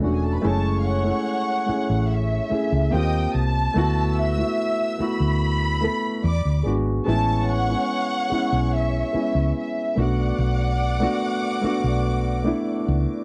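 A round, amped hollow-body electric bass sits up front in this silky, smooth 1970s-style soul piece at 72 BPM, under a mellow grand piano with deep bass, a lush bowed violin section carrying a woody, sul tasto vibrato melody from 0.5 seconds, and a dark string section adding a soft second line over chords like F#m7, E9 and Amaj7, all in a dry, close studio sound with light reverb.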